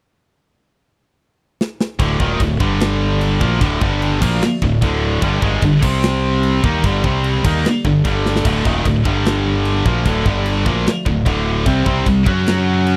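A drum fill opens this heavy metal passage at 1.6 seconds, cut from a longer piece, before the full band crashes in at 2.0 seconds on a D chord. The mood is epic and relentless, driven at 149 BPM in a straight 4/4 in D phrygian dominant, with the harmony moving among D, G5 and C5 and landing on F#5 near the close. Up front, the tight metal drum kit brings bright cymbal crashes, a medium-tuned snare and a tight kick in an airy, polished big-room sound, adding another fill at 8.3 seconds. A growling fingered electric bass sits equally forward, overdriven and direct, while three distorted, high-gain electric guitars play picked riffs further back, one of them double-tracked. Beneath it all, a very quiet pipe organ on stopped flute stops holds soft, hollow sustained chords with a baroque voicing and a touch of chiff, inside a dry, close 1970s-style studio recording.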